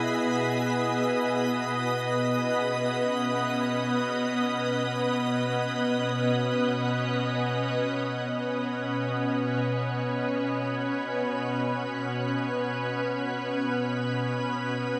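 Warm and luminous, this ambient excerpt in free time and B major rests on a bright, pure organ-like pad of sustained chords with ensemble chorus, while a calm, ring-modulated organ-like drone glows in the background and a very quiet, sparkling granular texture twinkles along until both drop away at 8.3 s, leaving the pad alone in a long shimmer reverb until 15.0 s.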